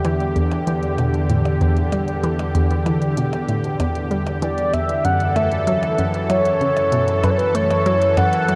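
Awash in a vast ambient reverb with a seven-point-nine-second tail and the soft grain of cassette tape, this short cut from a longer piece of sequencer-driven space music feels mysterious and hypnotic at a straight 96 BPM in 4/4, set in E dorian. A lush, thick unison pad of detuned sawtooths holds sustained chords up front, its slow attack and long release giving a bright, nasal shimmer through chorus. Alongside it, a hollow, bouncy square-wave pluck repeats a low riff with a fast attack and short decay, dressed in chorus, phaser and delay. Clicky, overdriven electronic hi-hats and percussion blips sit quietly in the mix and fade in gradually across the whole passage. At 4.4 seconds a mellow, horn-like synth lead enters up front with a round, warbling vintage tone, soft attack and vibrato, carrying a melody between B4 and F#5. The harmony moves from Em7 to F#m7 at 5.0 seconds.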